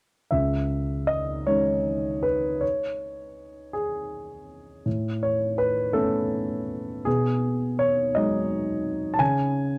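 A solo grand piano, up front and short in sustain, carries this reflective, melancholic neoclassical minimalist fragment in C# minor, spanning C#2 to A5 in a rubato 6/8 at roughly 52-58 BPM. Its harmony moves from C#madd9 through Aadd9 at 4.9 seconds and G#m7/B at 7.1 seconds before settling on a bare C#5. Light reverb and a dark, warm production frame this brief cut from a longer piece.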